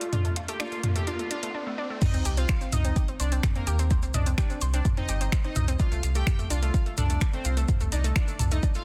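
A straight 4/4 pulse drives this hypnotic melodic techno cut, which opens with a juicy, detuned sweep polysynth melody, nasal wave-folded pluck arpeggios through tape echo, a deep house kit of metallic hats, finger snaps, toms and crash, and a background riser and sub drop over a filter-sweep build, until the drop at 2.0 seconds brings an overdriven, up-front kick, a round, dark analog bass pumping under the sidechain, grainy maracas and an intimate sul tasto violin section in the background, set in light reverb with a dense, heavily limited master.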